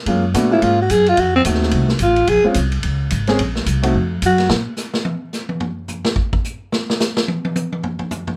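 Small-group swing and bop jazz in a moody, cool Bb minor at a brisk 216 BPM with a 60% swing: a raspy, growling alto saxophone enters at 0.5 seconds with gritty subtone and scooped notes over a Gbmaj7, F7b9 and Bbm9 progression, backed by a deep-voiced concert grand piano and a woody pizzicato upright bass, until the piano drops out and the chords give way at 3.9 seconds and the vintage drum kit, with its dark cymbals and punchy kick, takes a short drum solo from 4.5 seconds, carrying on alone once the bass stops at 4.7 seconds, beneath light reverb.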